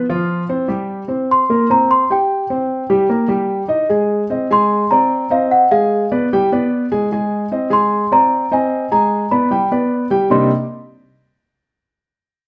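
Jazz in C minor at 150 BPM in a straight 4/4, this short passage, cut from a longer piece, carries a sophisticated, sultry mood. A warm grand piano plays the accompaniment from the start, sounding intimate and natural, placed up front with its action noise audible beneath the notes. At 1.3 seconds a celesta enters with the melody in a high register, its bell-like, delicate, sweet tone struck by medium felt hammers and sitting slightly forward in the mix. The harmony moves from a C7 sound through shifts between Ab, Abadd9 and G before settling on a Cm9 at 10.3 seconds, with both instruments stopping at 10.5 seconds. A wet studio reverb places the pair further back in the room, wrapping the duo in its ambience.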